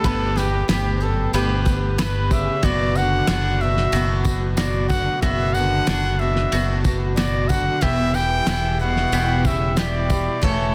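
A warmly nostalgic indie folk excerpt opens with nearly the full band at once: a close-miked trumpet sings the melody up front with light vibrato and an analog delay, in a classical style. Beneath it, a picked twelve-string acoustic guitar adds a bright, boxy, shimmering accompaniment, while a bowl-back mandolin plays arpeggios through its own analog delay in the background. A distant bowed cello traces an expressive second line with vibrato and portamento, and a soft, flute-like tonewheel organ holds very quiet sustained chords through a rotary speaker. The groove sits at 92 BPM in a straight 4/4, anchored by a direct, up-front fingered electric bass and a cloth-damped drum kit whose muffled, gritty sound pairs a fat snare and tight kick with dark ride cymbals. A jingly tambourine sits far back in a large room, and crisp group handclaps join at 0.7 seconds over a building arrangement that moves from G to Bm/F# and on to Em. 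The mix has light reverb and a dense, heavily limited modern master.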